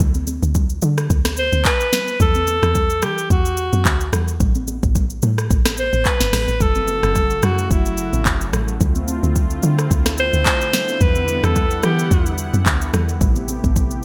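A hypnotic, deep amapiano groove at 109 BPM in 4/4, swung on the 16ths, is driven by an electronic afro-pop kit up front, with a deep kick, sharp snare, metallic hats, handclaps, rim click and shaker under gated reverb. Beneath it sits a round, dark log drum bass with a fast attack, while damped, high-tuned congas stay in the background. A breathy, intimate alto saxophone with delay carries the melody from 1.4 seconds, and at 6.6 seconds a smooth, detuned sawtooth pad with chorus adds sustained chords as the harmony moves through minor ninth colours in this bright, 1980s-style digital production cut from a longer piece.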